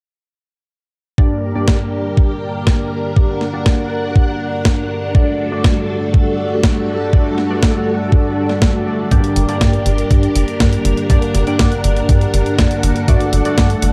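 A dark, lightly reverberant production frames this danceable, bittersweet italo disco passage, cut from a longer piece and moving between Gm and D/G chords. A lush vintage string machine holds sustained chords with ensemble chorus, while a glossy, retro polysynth plays up-front stabs through phaser, tape echo and a cassette-tape tint, its filter sweeping throughout. Beneath them sit a thumpy, up-front electronic kick and a clean 12-bit drum machine supplying hi-hat and a medium-tuned snare, and at 9.1 s a tight, punchy sawtooth sequencer bass enters with a driving, filter-plucked low end.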